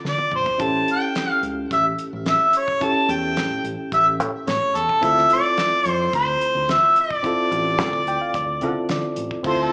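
Smoky and soulful, this straight-eighth soul blues excerpt puts a clear harmonica up front, singing a jazz-style solo with light vibrato, scooped notes, overdrive and a slapback echo over a Dm9 to A7 progression. A barky, lightly overdriven reed electric piano with fast tremolo comps underneath and takes a fill from 7.8 seconds, while a dark, round fingered electric bass and a damped 70s drum kit with a fat snare and tight kick hold the groove after a short drum fill at 0.1 seconds. It sounds like a live gig heard through the venue's PA, with club reverb and a small-speaker character.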